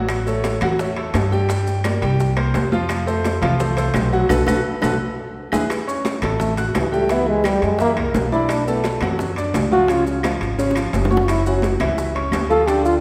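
Salsa with a festive, danceable feel, where a clear, up-front grand piano and a dark, thumpy pizzicato upright bass drive over ringing congas, tight high-tuned bongos, metal-shell timbales, woody claves and grainy maracas, with a band accent at 4.3 seconds and a drum fill leading into a punchy trombone solo with light vibrato from 6.4 seconds, heard in a wet concert-hall acoustic.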